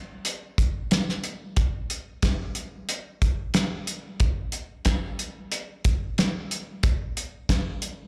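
Open-road and nostalgic, this short rock excerpt cut from a longer piece moves at 91 BPM in a straight 4/4. A lone acoustic drum kit plays from 0.2 to 8.0 seconds, its hi-hat, tight kick and medium-tuned snare sounding cloth-damped and thuddy, with a rolled-off top and an up-front placement. It has the feel of a live gig heard through the venue's PA, with light club reverb around the kit.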